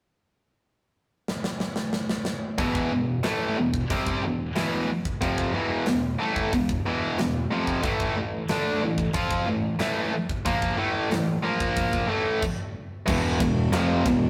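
A tight, distorted electric guitar drives this dark, aggressive heavy metal excerpt at 91 BPM in 4/4, joined by a high-gain guitar in the background, both entering at 2.6 seconds after a polished acoustic drum fill with bright cymbals and a tight kick, moving through power chords on E, A and A# in a rough stone rehearsal room, until a stop at 12.4 seconds gives way to a round, fuzzy overdriven bass arriving at 13.1 seconds.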